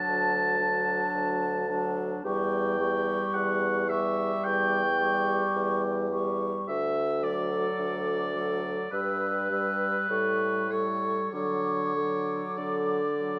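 Bathed in the reverberant resonance of a recital hall, this serene fragment of a slow romantic movement for wind quintet unfolds with a free, rubato feel in 4/4. A hollow, airy silver flute carries the melody with vibrato, shadowed by a distant, roomy oboe on the second line, while a clear French horn with light vibrato and a soft-attacked, very quiet clarinet supply the accompaniment. Beneath them, an up-front bassoon with a warm, lightly vibrating tone anchors the bass as the harmony moves through a C#dim/E and an A9 before coming to rest.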